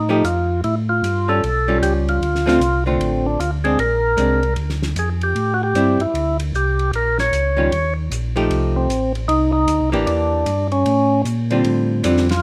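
A swinging 4/4 groove at 152 BPM drives this bluesy soul jazz organ trio excerpt, where a mellow, round tonewheel organ bass and a percussive organ melody with key click both turn through a slow rotary speaker up front. A dark, hollow-body archtop guitar supplies clean picked accompaniment, while a warm soul drum kit with dark cymbals rides on hi-hat, ride and snare low in the mix under light reverb. Chords move from F9 through Dm7, Bb9 and Ebadd9 to a closing Dm11 at 11.6 seconds.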